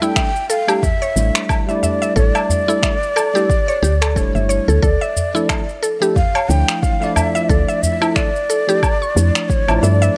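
Organic downtempo at 90 BPM with a 16th-note swing, this mystical, earthy passage cut from a longer piece moves from A7sus4 to Dmadd9 over a light reverb. A breathy, close-miked ney carries the melody with vibrato and a digital delay, over a bell-like tine electric piano with analog chorus and sidechain pumping, and a bright, mallet-like synth pluck playing chorused, delayed arpeggios. An overdriven electronic shaker, finger snaps and woodblock run throughout, joined by a deep, up-front kick drum from 0.2 seconds, a small, dry udu from 0.8 seconds and a round, dark, woody FM bass that pumps up front in the mix from 1.2 seconds.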